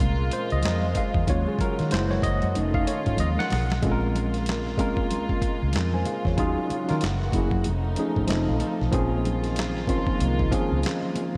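A dreamy mix soaked in lush hall reverb gives this late-night, sultry R&B and neo-soul fragment, cut from a longer piece, a hazy, floating glow with a lazy swung sixteenth-note feel. Up front, a worn, slightly out-of-tune tine electric piano, lightly overdriven through its built-in speakers, carries the accompaniment and takes a solo across the first 3.8 seconds, then adds a fill around 8.0 seconds. Underneath, a dark, round, foam-muted fingered electric bass and a dusty sampler-style kit with a thumpy kick, medium-tuned snare, hi-hat and handclaps hold the groove, the compressed, gritty drums also sitting forward and rolling a fill at 3.2 seconds. A soft-attack studio string section bowed sul tasto spreads pure sustained chords behind them, while very quiet, bright, damped congas played with soft hands add a faint vintage texture. The harmony drifts through Bbm9, Ebm11, Gb9 and F7alt, resolving through F7 back to Bbm9.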